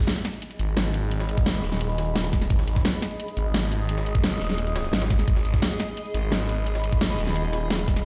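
A straight 4/4 pulse at 173 BPM drives this mechanical, aggressive slice of dark technical drum and bass in G# minor, with a layered dubstep kit carrying a huge snare, metallic hats and shaker up front. A very quiet, gritty jungle sampler-style kit adds a high-tuned, overdriven snare beneath it, and a knocking electronic kick joins at 1.4 s. A thick, swirling phased saw bass holds the low end with sustained notes between D#1 and G#1 over G# minor, while a mellow granular cloud pad drifts blurred and evolving above, pumping softly against the beat, all set in the echo of a bare stone room.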